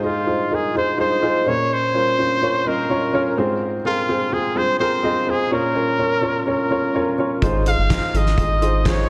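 A straight 4/4 pulse at 126 BPM carries this uplifting, hopeful piano-driven pop passage in Ab major, cut from a longer piece, with a woody upright piano, touched by slapback echo, laying down chords from the start while a bright trumpet with vibrato sings the melody from 0.1 seconds. At 7.4 seconds a round, dark analog bass and a loose indie drum kit with a fat snare, punchy kick, hi-hat and handclaps join in. A lush hall reverb gives the whole mix a big arena sound.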